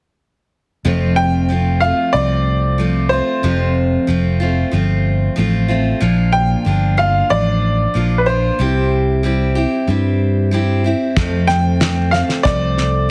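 A straight, steady 4/4 pulse carries this sunny, down-home slice of honky-tonk and classic country, cut from a longer piece. A picked steel-string acoustic guitar with a full-bodied dreadnought sound opens the accompaniment, joined almost at once by a round, punchy fingered electric bass. From 1.2 s a bright upright piano takes the melody in its upper register, its woody, brilliant tone and short sustain sitting up front. The harmony moves from F to Bb and then C before returning to F, and at 11.2 s a cloth-damped, thuddy drum kit arrives with a fat snare, tight kick and hi-hat, its top rolled off. The whole mix sits in a moderate large-studio reverb and carries a heavily compressed, radio-like sound.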